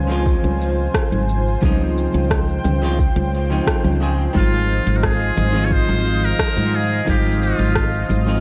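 An overdriven electronic kick with layered, overdriven cabasa and rim click, plus very quiet soft-handed congas, sets a straight, relaxed 4/4 groove for this sunny sunset chillout excerpt, where a growly, round fretless bass sits up front beneath a dark, clean hollow-body jazz guitar touched with sampler grit and tape echo and a thick, detuned sawtooth pad with chorus moving from Dbmaj7 to Ab6 at 4.3 seconds, before a buzzy, breathy muted trumpet enters at 4.4 seconds with a jazz solo line carrying tape echo, inside an echo-heavy mix with spring reverb.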